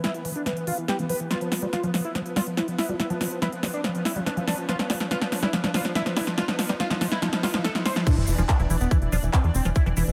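Intense and hypnotic, this psychedelic trance passage opens on a long build-up where a thick, detuned unison lead with phaser and delay, a squelchy liquid acid bass and a soft, pulsing gated texture in the background all pump against the sidechain under filter sweeps. An overdriven big-room dance kit of punchy snare, crisp hats, handclaps and crash carries a drum fill, while a very quiet riser and sub drop enters at 0.9 s. At 8.1 s the drop lands with an up-front tight kick, a grainy egg shaker and, just after, a dark, tube-saturated sequencer bass plucking beneath the lead, all in light reverb.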